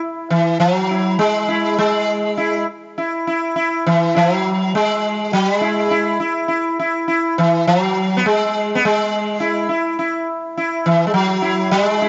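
Serene and radiant, this short cut from a longer Indian classical piece features a solo sitar in a lilting three-beat metre that gradually speeds up. The plucked sitar sits up front, bright and buzzing, its sympathetic strings adding a shimmering halo, with a cassette-tape softness to its tone. Light reverb and the dulled top end of a home cassette recording give the sound an intimate, homespun character, with the playing moving into a new section at 5.3 seconds.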